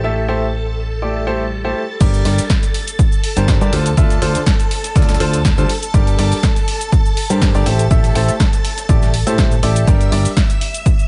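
Digital ambience with a dulled top end frames this energetic, bittersweet piano house piece, cut from a longer track, where a clear baby grand riff with delay, a round, mellow FM bass and shimmering, vintage string-machine violin chords all pump against the sidechain from the start. An electronic swell sits in the background from 1.2 s until the drop at 2.0 s. At that point an up-front, tape-warm electronic kick enters alongside a punchy analog drum machine with crash, hi-hat, shaker and snare, plus a very quiet, gritty, pitched-up breakbeat kit adding its own hi-hat and snare.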